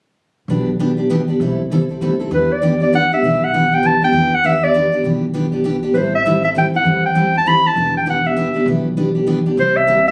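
A breathy clarinet carries the solo melody from 2.3 seconds, up front with vibrato, scooped notes and a smooth top, giving this bittersweet, virtuosic jazz manouche waltz its voice in a swung triple metre. Beneath it, a full-bodied, picked jumbo steel-string acoustic guitar sits up front on accompaniment from 0.5 seconds, while a woody, thumpy upright bass with gut strings plays dark pizzicato lines through chords that move from Em7 to Am7 and close on C7. Cut from a longer piece, it was captured on a phone in the room, with club reverb and compression.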